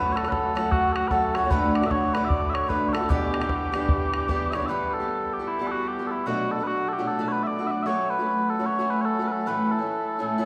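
Mellow small bagpipes carry a sweet, vibrato-laden melody up front in this dark, lively and driving swung Celtic hornpipe, cut from a longer piece, over a boxy, picked old ladder-braced acoustic guitar with audible finger squeak and a very quiet, shimmering, hammered cimbalom second line that stops at 6.2 seconds, while a boomy, close and dry bodhran pushes the rhythm until 4.6 seconds, all set in a wet church reverb.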